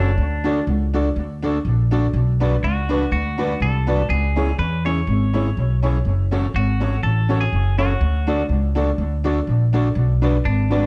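Ska at 123 BPM with a light swing on the eighths, energetic and mischievous, this short excerpt sets a twangy, picked electric guitar melody over a dark, fingered electric guitar accompaniment, jangly tack piano stabs trailing dub echo, and a woody, up-front pizzicato upright bass, moving through D, Bm, C#m and F#m in a dark, lightly reverberant mix.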